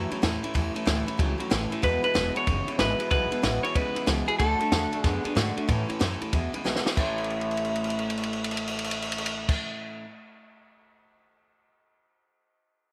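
Rockabilly in A major at 187 BPM with a swung eighth-note feel, upbeat and retro, heard as an excerpt from a longer piece. A clean, dark, compressed electric guitar carries the melody up front with tape echo until 5.3 seconds, over a bright picked steel-string acoustic, a slightly broken-up lo-fi electric riff, woody, thumpy pizzicato upright bass on gut strings, and a dry compact cocktail kit with a high-tuned snare, tight kick and dark cymbals. Drum fills arrive around 6.7 seconds and carry through the closing section, with the kit playing on alone until 11.0 seconds, all set in a light studio reverb.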